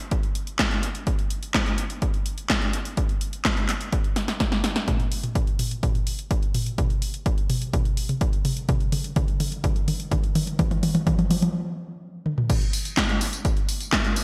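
Italo disco at 126 BPM in a straight 4/4, this sunny, playful drum passage is cut from a longer piece. A punchy analog electronic kick sits up front, re-recorded in a large room. Beside it, a layered, produced house kit brings handclaps, tambourine, hi-hat, crash cymbal, toms and a snare that hits just as hard, with tape-warm hats and gated reverb on the kit adding snap. A drum fill arrives at 4.2 seconds and leads into a long run of fills, before the drums stop at 11.5 seconds and return for a brief closing section at 12.5 seconds. A lush hall reverb and bright 1980s-style digital production give the recording its spacious, glossy sheen.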